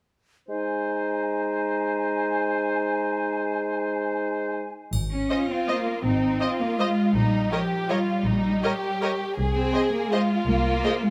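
This short cut from a sweeping, elegant orchestral ballroom waltz in 3/4 opens with a woodwind chord of pure-toned flutes, clarinet and a distant, roomy oboe over a dark bassoon, all played with a rubato feel. At 4.9 seconds the strings take over as a bowed double bass section and a brief dry tick of triangle arrive, soon joined by up-front cellos, lush violas and an expressive violin second line, while a smooth, focused violin melody sits in the background. The harmony moves from Ab to Eb7/Bb and on to Ab/C under light reverb.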